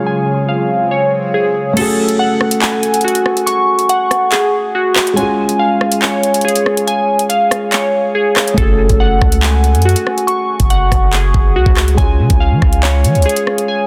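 Glassy digital keys stand out in this dark, cold drill excerpt, their chorused, delayed arpeggios sitting up front at 141 BPM in a half-time 4/4 feel in F# harmonic minor. Beneath them a felt-muted upright piano plays soft, intimate accompaniment with audible action noise, while an airy, breathy pad holds detuned chords for the opening moments as a filter sweep and a background electronic swell build the intro. The drill kit arrives at 1.8 seconds with metallic hi-hats, rim clicks, handclaps and crash cymbal, its snare softly clipped, though the knocking kick stays muted until 8.6 seconds. At that point a deep, sine-toned 808-style bass enters, its long decaying notes adding weight under the chords, which move between C# and F#madd9. Light reverb and a digital ambience surround the parts, and the dense, heavily limited master keeps the sound tight and modern.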